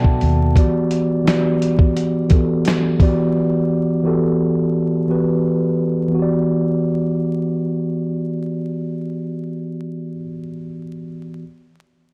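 The recording has a dark, warm sheen, with vinyl crackle and a moderate plate reverb that lend it a hazy glow. This lo-fi hip hop fragment, cut from a longer piece, has a reflective mood and a lightly swung 4/4 feel. A mellow, clean tine electric piano sits up front as accompaniment and carries through to 11.4 seconds. It opens with a short fill over a Bm7 before settling onto Em9, its tone softened by a low-pass filter. A sampler-style drum kit with gritty 12-bit texture, a thumpy kick, a fat snare and hi-hat, captured in a large room, plays only until 3.2 seconds. A round, foam-muted fingered electric bass adds a brief, punchy note near the start.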